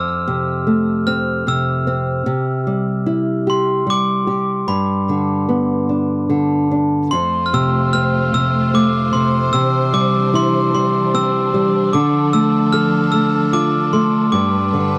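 In a gently rubato 3/4 at 75 BPM, this sleepy, innocent children's lullaby in C major is cut from a longer piece. It opens with a bright, sparkling glockenspiel melody struck with hard plastic mallets and touched by tape echo, set over a dark, small-sounding fingerpicked nylon-string guitar whose finger squeaks sit up front. At 7.1 seconds a clear, focused studio string section enters with bowed, vibrato-laden sustained chords, all captured in a dry, close 1970s-style small room.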